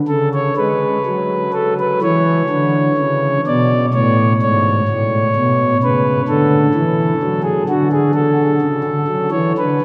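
Classical chorale-style music for solo pipe organ, serene and majestic, unfolds at a rubato 63 BPM in 4/4 as a smooth principal stop with baroque voicing and chiff sits up front, moving from Amaj13/C# through C#m and a rootless F#m to Dmaj7 inside a long, wet cathedral reverb heard from further back in the room, in this short fragment cut from a longer piece.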